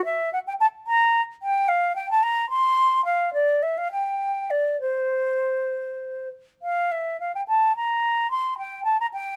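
In a swaying 6/8 metre, counted in dotted quarters at roughly 64-74 BPM, this brief fragment of a longer piece moves with a free, rubato lilt that feels both dance-like and flowing. It is a classical, baroque-style fantasia for a single concert flute playing alone throughout, staying between C5 and C6. The flute's sound is airy and mellow, with a straight tone and a soft attack, and it sits up front in the recording. Light reverb surrounds the close, detailed microphone pickup, giving the line a gentle sense of space. The opening idea runs to about 6.6 seconds and then begins again, carrying the passage through to 9.4 seconds.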